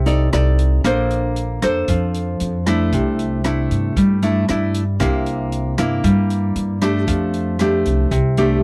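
A straight 4/4 bossa nova groove at 116 BPM sets a sunny, breezy mood in this short cut from a longer piece in C major, tuned to A4 = 441 Hz. Up front, a full-bodied, fingerpicked nylon-string guitar carries the accompaniment through rich chords such as Bbmaj9, C69 and F69, while a woody, growly pizzicato upright bass sits beneath it. Further back, a vintage drum kit with a tight kick and rolled-off top plays hi-hat, kick and rim click, all captured in a dry, close 1970s-style studio sound with light reverb.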